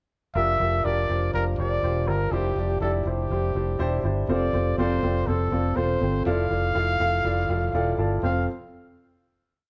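Driving eighth-note electric bass, round and punchy, and close-voiced eighth-note chords on a woody upright piano with audible action noise set a straight 122 BPM pulse in 4/4 for this short, uplifting, anthemic piano-driven pop piece in F major, as a breathy, whispered trumpet with light vibrato sings motif-based song phrases up front through a live stone-room ambience, the piano adds a fill at 7.2 seconds, and the band settles on a final F chord at 8.2 seconds.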